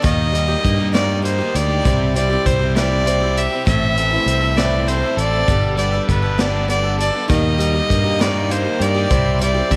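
A small room with light reverb frames this short cut from a longer folk rock and heartland rock piece, a nostalgic, open-road tune moving at 66 BPM in a straight 6/8 over Eb, C, Am and Gadd9 chords. An up-front, biting, nasal fiddle carries the melody over a round fingered electric bass, a vintage drum kit with a punchy kick and rolled-off top, a bright, boxy picked acoustic guitar with finger squeak and a swing feel, and a compressed, double-tracked overdriven electric guitar riff sitting in the background. At 5.5 seconds, a very quiet worn, slightly out-of-tune reed electric piano and a clean tonewheel organ through a slow rotary speaker join in.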